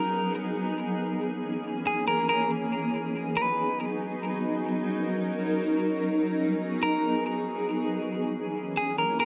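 An echo-soaked mix and a moderate echo-chamber reverb blur this short, free-time hip hop piece in G# minor, cut from a longer work, into a melancholic, hazy fog. A granular cloud pad sits up front for the whole passage, holding sustained chords with a slow attack, long release and its own built-in reverb, its detuned unison tone cloudy and constantly evolving. Over it, a clean electric guitar picks a compressed, warm melody between G#4 and B4, softened by a low-pass filter and trailed by tape echo. The guitar drops out at 3.8 seconds, leaving the pad alone before it returns at 6.8 seconds. The harmony drifts between G#m7 and A#m7b5, passing once through D#m7.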